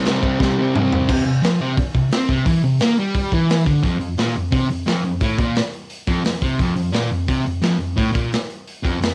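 Garage rock at a fast 174 BPM in straight 4/4, raw and rowdy, this short excerpt cut from a longer piece opens on a distorted, double-tracked fuzz guitar riff built on a C5 power chord, picked up front from F2 to C4 with the saturation of cassette tape. A crunchy breakbeat drum kit joins at 0.1 seconds with crash, hi-hat, kick, snare and toms, its dark cymbals, tight kick and rolled-off top sounding gritty and mid-forward, and a drum fill runs from 0.4 to 1.1 seconds. The home cassette recording carries a light reverb, and at 3.8 seconds the harmony drops away into a final section that runs to 9.1 seconds.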